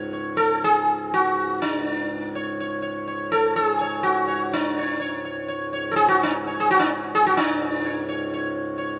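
Hindustani classical music in a radiant, devotional mood, this brief excerpt moves at 125 BPM in 3/4 and gradually speeds up across its 9.0 seconds, shifting into a new section at 7.4 seconds. An up-front acoustic sitar carries the melody with a bright, buzzing, shimmering tone from its plectrum-plucked and sympathetic strings, while a hand-pumped harmonium sits lower in the mix as a reedy, breathing, vintage drone. The sound is bathed in the long reverb of a scoring stage, with lossy compression artefacts.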